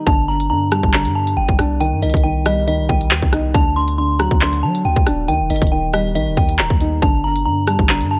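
Menacing and tense, this drill cut at 138 BPM in a half-time feel sets a delicate, tinkling FM tine bell with chorus and a low-pass filter up front on the melody over a felt-muted upright piano whose dark, intimate accompaniment carries audible action noise, while a deep, sine-toned 808 bass with long decaying notes and an electronic drum kit of hard-clipped kick, crisp hi-hats, handclaps and rim clicks drive a G harmonic minor progression through Cm, D and Eb in a dry, close-up mix.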